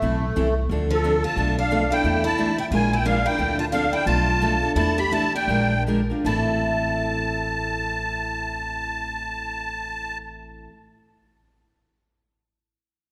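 A swung 4/4 pulse at 152-178 BPM drives this fiery, virtuosic slice of acoustic string swing in A minor, where an up-front, reedy musette accordion with shimmering wet tuning carries the melody over a bright, boxy parlour guitar accompaniment with audible finger squeak, a woody, thumpy pizzicato upright bass on gut strings, and a warm concert guitar second line that enters at 0.9 seconds, the whole group heard in a reverberant church or concert hall as the tempo slows between 3.4 and 6.3 seconds.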